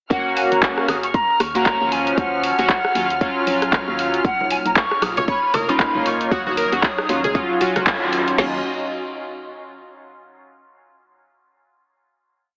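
Squeezed into a heavily compressed, AM-radio sound yet bathed in a lush hall reverb, this deep, hypnotic deep house piece in Eb minor at 116 BPM with a swung 16th feel opens at 0.1 s with a breathy, distant jazz flute hook trailing dub echo over glossy, chorused polysynth stabs and a dark organ-like FM bass, both pumping with the sidechain, while a deep house kit with four-on-the-floor kick and woody snare and a punchy analog drum machine's claps, hats and rim clicks drive beneath a veiled, muted violin section holding a high note; a soft, warbling pad arrives at 4.2 s, soft-handed congas sit in the background, and a plucky, detuned unison lead with 12-bit grit and tape echo joins at 5.2 s before a band accent and a closing chord.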